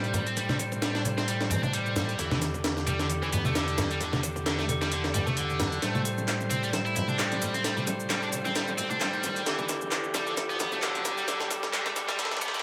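Breakbeat with a swaggering, funky attitude, this short passage cut from a longer piece rides a swung 132 BPM groove in A minor, building steadily throughout its 12.6 seconds. A reedy tonewheel organ holds clean, up-front sustained chords that move between Am7 and Em7, its tone roughened by vintage 12-bit sampler grit and pumped by sidechain compression. Alongside it, a double-tracked, high-gain electric guitar plays a picked, distorted riff thickened by tube saturation, softened by a low-pass filter and trailed by dub echo. The sampler-style drum kit sounds compressed, pitched up and gritty, with a thumpy kick and a high-tuned snare, supported by layered electronic shaker and handclaps with a tape-warm sheen, while hard-hand congas and bongos sit in the background with saturated tone and their own dub echo. A drum fill arrives at 5.8 seconds, and from 7.8 seconds an electronic riser climbs in the background, capped by a reverse cymbal at 12.2 seconds, all within an echo-heavy mix bathed in moderate spring reverb.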